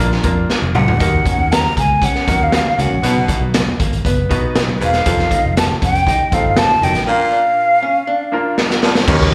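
A driving, straight 4/4 pulse at 119 BPM carries this passionate, uptempo 1960s-style soul excerpt, cut from a longer piece and heard live through a club's PA with light reverb. The raw garage drum kit sits up front with a boomy kick, medium-tuned snare, hi-hat, toms and crash, its saturated, gritty sound pumping in a small room, with fills at 0.5 and 8.6 seconds. A dark, round, foam-muted electric bass anchors the low end, while very quiet low-tuned congas played with soft hands add a bright, thin-skinned patter. A clear concert grand piano with deep bass and a dark, compressed hollow-body archtop guitar riff, set in the background, both carry slapback echo as the chords move from Bb through Ebm, B and F7 back to Bb. A raspy, growling baritone saxophone riff enters at 0.7 seconds, and a breathy, close-miked silver flute takes the melody up front with vibrato, both also touched with slapback echo.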